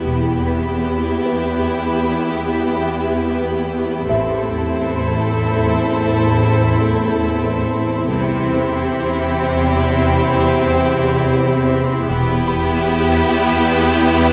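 A swarming, detuned drone and two bowed violin sections, one singing a close melody with vibrato and portamento and the other holding a distant second line, open this mysterious, eerie suspense-score excerpt in free time and E minor, joined almost at once by smooth violas, focused cellos, a background double bass section that drops out at 12.8 s and a blurred granular cloud pad, while a delicate, tinkling music box enters at 1.3 s over slowly shifting Em, Am and C harmony inside a wet church reverb.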